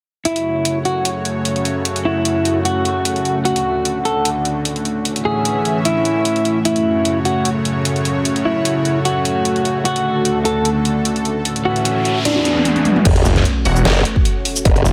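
This chaotic, aggressive heavy wobble dubstep excerpt in F# minor opens at 0.3 s with a clean, fingered electric guitar melody trailed by delay over a lush, detuned supersaw pad that pumps under a low-pass filter and a deep-snared dubstep kit with crash, hi-hat, shaker and toms at a swung, half-time 150 BPM, joined at 1.9 s by a deep, moody ambient pad washed in chorus, until a noise sweep, sub drop and drum fill lead into the drop at 13.1 s, where a punchy electronic kick and a saturated formant-sweep wobble bass, followed at 13.3 s by a growling, overdriven saw bass, surge up front beneath a bright, phased orchestra-hit-like stab set back in a lush hall reverb.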